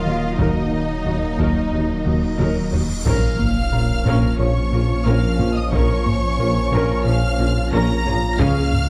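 Opening at once on lush, expressive bowed violins carrying the melody over a clear second violin line, smooth violas, an evolving, detuned wavetable pad with chorus and built-in reverb, mellow distant French horns, a very quiet tuba, rich cellos and a thick saturated sub bass, this brooding, relentless 90 BPM hybrid orchestral and electronic film cue in Bb minor quickly adds ringing harp-like synth pluck arpeggios, a round analog bass riff, faint bowed double basses and close, dry taiko on hard sticks, with a drum fill from 2.1 s and a huge, brilliant cymbal swell rising into an impact at 3.1 s, the whole cut from a longer piece and set in a wet recital hall reverb with a dark production.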